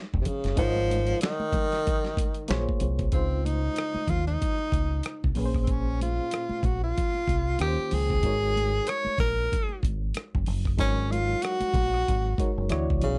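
R&B and neo-soul at a swung 94 BPM, soulful and sultry, where a breathy, up-front tenor saxophone with vibrato, subtone, scooped notes and slapback echo carries the melody over a reedy electric piano with fast tremolo, a round, dark fingered electric bass, a gritty, compressed sampler-style drum kit with a thumpy kick, and soft, high-tuned congas in the background, all captured in a dry, close 1970s-style studio sound as the chords drift from Ab9sus4 through Dbmaj9 and Eb13.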